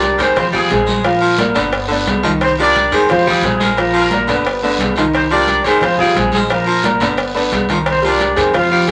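Fiery and passionate, this salsa excerpt in straight 4/4 is cut from a longer piece and plays throughout its 8.9 seconds over a repeating cycle of Fmadd9, Bb, G and Cm7. A dark, punchy horn section carries the melody in octave doubling with light vibrato, set back in a roomy space, while a growling, gritty baritone saxophone sits present and edgy beneath it on a second line. An up-front concert grand piano supplies clear accompaniment with a deep low end, and a woody, thumpy upright bass played pizzicato on gut strings anchors the bottom quietly. Bright, damped congas and a round, low-tuned cowbell, heard close and dry, sit in the background alongside ringing metal-shell timbales and agogo bells that sound far off in a large room, and a raspy guiro joins them. The whole mix is bathed in a wet small-room reverb, and its top end is softened, with nothing above 10.5 kHz.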